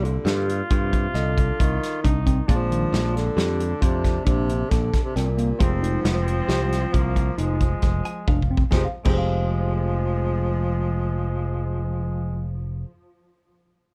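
Brooding and tense, this fragment of progressive instrumental band music moves at 135 BPM in 7/4 in F dorian, with a mellow, distant tenor saxophone carrying the melody through plate reverb and digital delay while a soft-attack vintage flugelhorn adds a second line from 0.3 seconds, a tine electric piano plays tremolo-tinged arpeggios in the background beside a dark, compressed hollow-body jazz guitar that takes a fill at 7.8 seconds, a bright picked electric bass sits up front, and a small-room acoustic drum kit with a punchy kick plays until 9.2 seconds, the whole mix set in light reverb.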